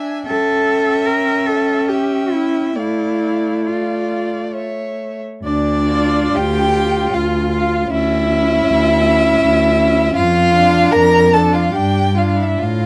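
Classical chamber music for string quartet, this yearning, elegiac fragment of a slow romantic movement drifts in 3/4 at 63-82 BPM with a rubato feel in D minor, its harmony moving from A7/C# through Dm/A and A before settling into Dm, Dsus2 and Dm/F and closing on Em7/G. A focused first violin with a smooth top carries the bowed melody, while a second violin plays an even inner line and a rich viola supplies the accompaniment, all three singing with vibrato. The expressive cello enters at 0.3 s and sits up front with a soft attack and portamento, giving the bass a warm presence, and a light reverb completes a dark production.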